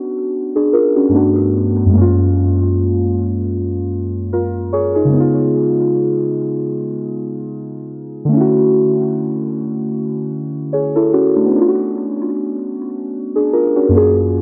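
Hip hop in a cosy, dreamy mood, this short cut from a longer piece moves at an unhurried 75 BPM in 4/4 with a gentle 56% swing on the 16ths, tuned to A4 = 445 Hz. A single part carries it from 0.0 to 14.4 s: muted, felt-like synth keys playing solo across a range from F#2 to C#5. Their intimate, dark tone blends triangle and sawtooth waves with a noise layer, each note striking quickly and then decaying, and they sit up front in the mix. Chorus, phaser, cassette tape colouring, a low-pass filter and analog delay give the keys a hazy, worn character, set in a light reverb. The harmony drifts through lush extended chords, starting on Bmadd9, passing through Gmaj9, F#maj9, C#7 and Dmaj9, and returning to Bmadd9 at 11.5 s.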